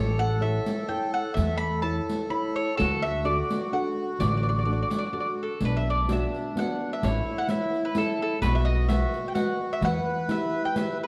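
Dark, warm production in a moderate recital hall reverb frames this lively, romantic Italian folk serenade in 3/4, cut from a longer piece, where a mellow, round, double-strung mandolin picks the melody up front over a reedy accordion second line with slow beating, a full-bodied fingerpicked nylon-string guitar accompaniment and a woody, thumpy pizzicato upright bass, while a distant riq with bright jingles and hard hands joins at 0.7 seconds and a new section begins at 5.6 seconds.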